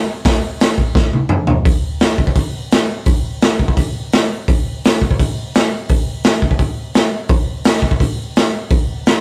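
A raw, saturated garage drum kit opens this menacing rock fragment in straight 4/4, playing hi-hat, punchy kick, medium-tuned snare and toms up front in a small, pumping room with light reverb and a rolled-off top, rolling through a drum fill from 0.9 to 1.7 seconds before settling into a gritty groove that runs until 9.1 seconds, all captured as a rough rehearsal-room recording cut from a longer piece.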